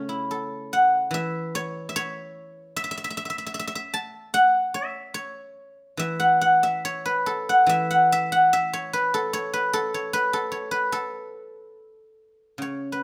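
The rhythm moves freely in rubato over a 2/4 metre, hovering around 68-76 BPM and giving this short Chinese traditional excerpt a serene, flowing character. A solo guzheng carries the entire passage from start to finish across its roughly 13 seconds, set in the A gong mode. Played with fingerpicks, the instrument sounds silvery and ringing, reaching from C#3 up to A5. It sits up front in the mix, with its acoustic tone heard clearly and closely. Light reverb and the feel of a live performance in a single room lend the plucked strings a gentle sense of space.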